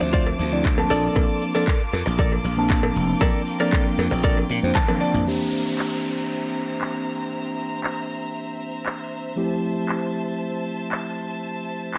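This feel-good, sunny nu-disco excerpt at 117 BPM opens with a mellow tine electric piano carrying tape echo, bright, intense violin chords pumped by sidechain, a clean picked electric guitar riff in lush chorus, growly slap bass, a punchy up-front electronic kick, a tape-warm house kit with metallic hats, handclaps, tambourine and toms under low-pass filtering, and a close, dry cowbell in the background. A guitar fill, a drum fill and a band accent close the first part, and by 5.2 seconds the guitar, bass and kick have dropped away, leaving piano, strings and kit over a faint downlifter as the chords move from Dm7 and Bbmaj7 to C7 and Fmaj7. The overall sound is dry and gritty, touched with light digital ambience.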